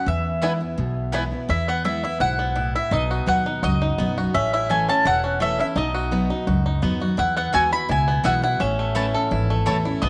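The mandolin leads this driving, virtuosic bluegrass excerpt, its picked double strings round and up front as it carries the melody high in its range over a brisk 169 BPM in E major. Beneath it, a bright, full-bodied dreadnought acoustic guitar picks out the accompaniment, while a pizzicato upright bass adds a woody, thumpy low end from 0.1 seconds. The banjo joins at 0.4 seconds with twangy, percussive arpeggios played with fingerpicks, tucked a little lower in the mix. A second mandolin, bright and woody, cuts in with short stabs at the opening and again from 7.5 seconds. The chords move from E through B and A, back to B, then on to an Eadd9 and A, and a moderate plate reverb gives the ensemble a roomy glow.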